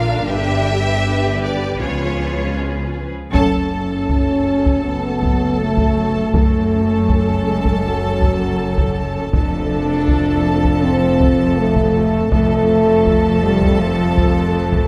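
Mellow, close-miked French horns hold sustained chords up front in this heroic, epic orchestral film-score cut. Beneath them, lush bowed strings fill out the texture: violins carry a focused, vibrato-rich melody over a smoother, more distant second violin line, while expressive violas, cellos and soft-attack double basses with portamento supply accompaniment and bass. At 3.3 s a band accent lands as a taiko ensemble enters with hard-stick, compressed, saturated drums and a background trombone section joins on warm sustained chords, all of it bathed in a wet scoring-stage reverb.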